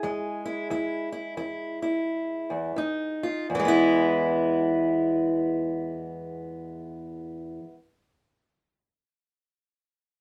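A fingerpicked steel-string acoustic guitar opens this short excerpt of rollicking, swaggering acoustic country blues in E major, playing solo with a boxy parlour tone up front in a wet studio reverb, swinging in 4/4 at around 81-91 BPM as it slows over the first 3.5 seconds, holds a stop until 2.8 seconds, moves from E to Fm7 and settles back on E at 3.5 seconds.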